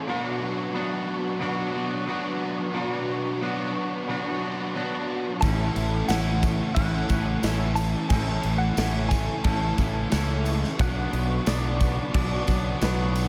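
Two overdriven guitars open this blissful, wistful shoegaze and dream pop excerpt at 90 BPM: a biting one trailed by reverse reverb and an up-front semi-hollow one shimmering with ensemble chorus, riffing over Bm. At 5.4 s the harmony moves to A6, and a twangy, compressed clean guitar melody with analog chorus and delay enters alongside a growly, fuzzed fingered bass, a punchy big-room rock kit with bright crashes, and a jingly, close and dry tambourine in the background. The chords return to Bm at 10.8 s, all within a light reverb and small room ambience.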